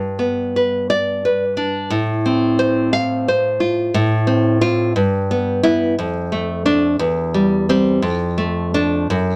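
The recording is dry and gritty, with a moderate studio reverb of short decay lending the room a modest sense of space. This is a romantic piece for solo classical guitar, nostalgic in mood, moving at 59 BPM in a rubato 6/8 and tuned to A4 = 438 Hz. The nylon-string guitar sits up front through the whole 9.4 seconds, fingerpicked in a classical manner with a warm, acoustic tone that spans from E2 to F5. Its harmony starts on G, moves to F/A at 1.9 seconds, and then steps through Em/G, Dm/F and C/E before settling back on Dm/F at 8.0 seconds. Cut from a longer work, the passage has a warm, nostalgic quality.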